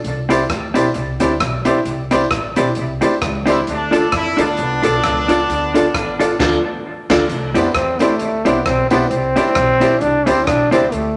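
A swung 132 BPM ska groove in C major opens this cheerful, joyful cut from a longer piece, driven by a swinging big-band drum kit with a punchy kick, dark cymbals and rim clicks alongside a woody, growly upright bass, while a clean hollow-body jazz guitar with dub echo comps and a brilliant upright piano sits in the background with stabs over Cadd9 and Dm. A very quiet, jingly tambourine adds distant shimmer as a clear, punchy horn section carries the melody with light vibrato from 3.5 seconds, leading into a band accent. From 7.6 seconds a smooth, up-front trombone takes a solo over the returning Cadd9, all set in a moderate studio reverb.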